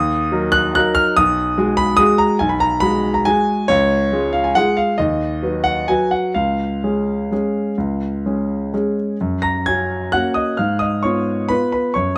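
Classical piano waltz in 3/4 and F# major, elegant and sparkling, moving with rubato between 124 and 153 BPM, where a solo grand piano spanning B1 to A#6 sounds clear, intimate and up front with audible action noise, set in light reverb and a dark production, opening on D#m before turning to a new section at 9.2 seconds that lands on F# in this brief fragment of a longer piece.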